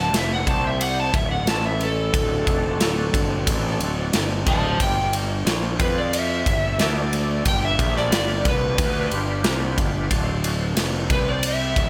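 A dark, overdriven slide guitar takes the solo in this gritty, raunchy blues rock and southern rock excerpt, played in a straight 4/4. Beneath it, a growly fuzz bass and a punchy big-room drum kit with bright cymbals sit up front, while a thick tonewheel organ holds sustained chords in the background through a slow rotary speaker and chorus vibrato, its key click audible. The harmony moves through D7, G7 and F5 before returning to C5 at 11.1 seconds.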